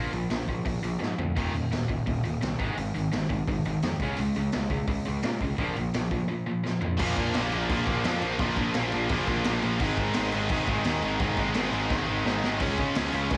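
A straight, driving 4/4 punk rock beat at 171 BPM comes from a raw garage drum kit that is gritty and saturated, with a punchy kick, medium-tuned snare, crashes, hi-hat and toms, plus fills along the way, one of them leading into the change of section. A tight distorted guitar and a growly fuzz picked electric bass push the rowdy, energetic riff up front from the start, while a very quiet, compressed distorted electric guitar joins at 1.4 s as the power chords move from Bb5 through Eb5, Ab5 and Db5 and back to Bb5. At 7.0 s a heavy, double-tracked high-gain guitar thickens the riff as the harmony shifts to Bb, Ab and Db, all caught in a dry home cassette recording of a fragment cut from a longer piece.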